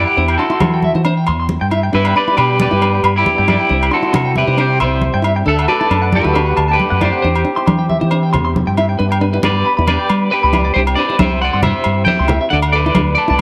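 Joyful, carefree highlife guitar band music, cut from a longer piece with a light swing, where a slightly broken-up electric guitar carries the twangy tremolo melody up front over a round, punchy fingered bass, while a compressed clean electric guitar ripples bright arpeggios through tremolo and tape echo, a fingerpicked nylon-string guitar accompanies in the background, ringing congas and dry agogo bells drive the percussion, a mellow, breathy trumpet plays a scooped jazz-style second line until 8.5 s, and a reedy tonewheel organ with key click and slow rotary speaker holds sustained chords from 1.9 s in light studio reverb.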